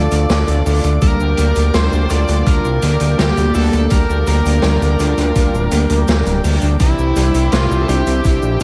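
A fat, thick analog bass sits up front with tube saturation and sidechain pumping, anchoring this moody, nocturnal synthwave piece at 83 BPM in G dorian, cut from a longer piece, as the chords move from Dm to Gm and then Cadd9 at 6.8 s. A smooth overdriven lead guitar carries the melody through analog delay over a shimmering, dark pulse-width pad that pumps in the background, a quiet, clean fingered electric guitar riff that stops at 6.7 s, and brassy, round synth stabs with chorus, vibrato and delay. A gritty small-room garage kit of hi-hat, shaker and snare is joined by a thumpy overdriven electronic kick that enters at 1.0 s, a very quiet bright analog pluck adds arpeggios at the close, and the dreamy mix is soaked in lush hall reverb.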